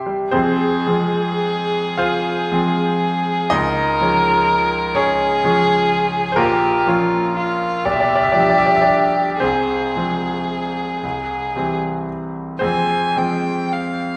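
Solemn and elegiac, this romantic classical duo moves in a slow, rubato 6/8 in F minor at roughly 35-43 BPM, with the warm, smooth violin singing the melody above a bright, brilliant grand piano whose action noise is audible up close. The piano opens at 0.0 s and the violin joins at 0.3 s, its bowed tone even and colored by vibrato, as the harmony passes from Fm through Db, Bbm and G7/B toward C before settling back on Fm at 12.6 s. Both instruments sit up front, yet a wet recital-hall reverb places the listener further back in the room, with a soft-edged top end, in this passage cut from a longer piece.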